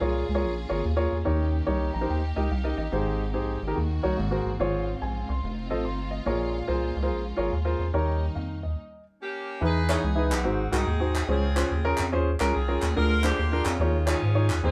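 Swinging at 144 BPM in 4/4, this hopeful, jubilant uptempo gospel excerpt sets an up-front grand piano with short sustain and a rubbery, bouncy square bass against lush bowed strings until a stop at 8.8 s. A tight, distant saxophone section with vibrato enters at 9.2 s to take the melody, and vintage, band-limited handclaps join at 9.9 s, all in a moderate room ambience that feels like a band playing live together.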